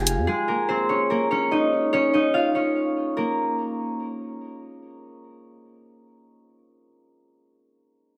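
Hip hop at 145 BPM in 4/4 with a half-time feel, this short cut from a longer piece carries a tense, ominous mood. A concert harp carries the melody alone, acoustic and fingerpicked, its ringing tone sitting up front in the mix and spanning Ab3 to Ab5. A digital delay trails the harp's notes, and a moderate recital hall reverb with a 1.3-second decay adds a digital sense of space around it. The harmony settles on Bb minor from 0.3 seconds, then drops away at 3.6 seconds as the music moves into a new section with the chord removed. The harp plays until 6.4 seconds, and the cut ends at 6.9 seconds.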